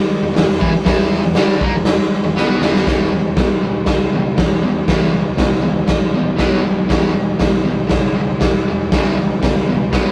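Garage rock with a rowdy, swaggering strut: a bright, double-tracked fuzz guitar grinds out a compressed riff over a very quiet, overdriven picked electric bass and an up-front acoustic drum kit with a punchy kick, medium-tuned snare and hi-hat, dark and rolled-off on top in a stone room, all caught as a rough rehearsal-room take with light reverb and a drum fill at 2.4 seconds ushering in a new section at 2.9 seconds of this cut from a longer piece.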